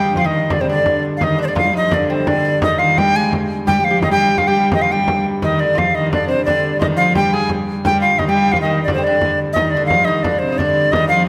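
A tongued, airy tenor recorder carries the melody up front in this driving, ancient-sounding medieval dance in 3/4 at 173 BPM that speeds up throughout, with a delicate, fingerpicked gut-string lute and a boxy, floating viola da gamba playing second lines, a nasal, reedy hurdy-gurdy drone in the background, and soft-handed frame drum, close and dry, all set in a concert hall reverb across this short 11.3-second cut from a longer piece.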